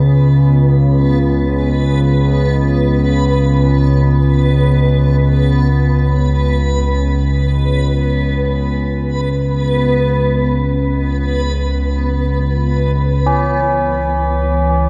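Dark ambient drone in free time, vast and ominous, this fragment of a longer piece rests on a nasal, sawtooth-edged analog drone with pulse-width modulation and chorus, sustained up front over a Bsus2/C# harmony. A softer backwards swelling texture, dreamy and granular with shimmer reverb, hovers behind it until 13.3 seconds, when the chord moves to C#m and solemn, metallic tubular bells ring out arpeggios on C#4 through tape echo. The whole sits in a cathedral-like reverb with a 5.1-second tail and the hazy grain of cassette tape.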